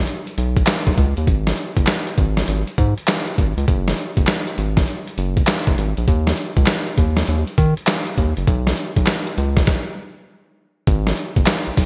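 A round, deep, wave-folded analog bass opens this slick, bouncy new jack swing excerpt at 100 BPM, joined at 0.1 seconds by a gritty, pitched-down boom bap sampler-style kit of thumpy kick, medium-tuned snare, handclaps and hi-hat with gated reverb and a swung 16th-note feel, both sitting up front in a bright 1980s-style digital production with light reverb, before a stop from 9.7 to 10.9 seconds.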